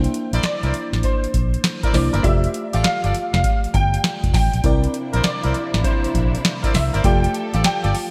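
Bouncy and flirty, this short new jack swing cut from a longer R&B piece moves at 100 BPM in F major with a swung sixteenth-note feel, trading between C9 and F69 chords. A booming analog drum machine sits up front with a deep kick, tonal snare and metallic hi-hats treated with gated reverb, while a vintage muted fingered electric bass adds a dark, round, punchy low end. A clear baby grand piano carries the melody in a polished, present voice with ensemble chorus, over glassy, bell-like FM electric piano chords. A distant, roomy horn section in a tight jazz style punctuates the groove with stabs from 0.3 seconds, and a lush studio string section with smooth vibrato joins at 4.6 seconds to hold sustained chords. The bright 1980s-style digital production is bathed in a moderate hall reverb.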